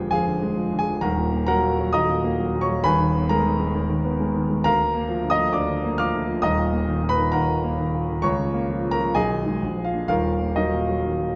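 Heard through a wet recital hall reverb with a dark production, a grand piano sits up front with a natural, warm tone. This stormy, passionate classical study for solo piano moves at 133 BPM in 4/4, its rubato feel pushing and pulling against the beat in Eb minor. The piano alone carries everything from 0.0 to 11.4 seconds, ranging from a deep Eb1 up to F6 as it asks for virtuoso command. The harmony opens on a diminished chord before settling into Eb minor at 1.0 seconds. It then passes through Ab minor, Bb major and Bb minor colours and gathers into a Bb7 that resolves to Eb minor at 10.1 seconds. Cut from a longer piece, the passage feels like a single turbulent sweep caught mid-flight.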